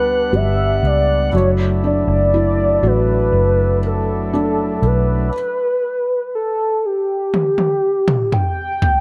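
A velvety synth lead carries the melody from the first moment of this hopeful, emotional pop ballad excerpt in D major, moving slowly at 60 BPM in a straight 4/4. Beneath it, a felt-muted upright piano gives soft, intimate accompaniment with a short, dark sustain, while a pipe organ on flute stops holds sustained chords with a gentle chiff and tremulant. A vintage fingered electric bass, foam-muted, round and punchy, sits up front alongside the lead, and the harmony moves from Gmaj7 to Dadd9/F#. At 5.3 seconds the bass and organ stop, the piano follows a moment later, and the smooth, vibrato-tinged synth line continues on its own with its chorus shimmer. Layered electronic toms, tape-warm and placed close up front, come in with a fill at 7.3 seconds. The production is bright and digital in a 1980s style, with a light touch of small-room reverb.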